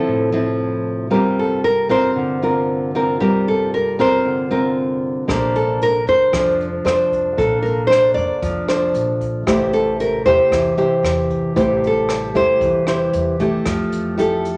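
Bossa nova at 115 BPM in 4/4 with a straight feel, this relaxed, breezy fragment of a longer piece opens with two fingerpicked nylon-string guitars placed up front, one carrying the melody in a narrow upper register while the other supplies classical-style accompaniment. Behind them, a mellow woodwind section holds sustained chords with light vibrato, sounding tight and smooth on top while sitting in the background. At 5.3 seconds a pizzicato upright bass with a woody tone joins, along with a jazz brush drum kit of hi-hat, rim click and a boomy kick captured in a small room. The harmony moves from Dm9 through Gm7, Bbmaj9 and Am7 before settling on Fmaj9 at 13.7 seconds. A wet, large studio reverb gives the whole ensemble an airy, spacious setting.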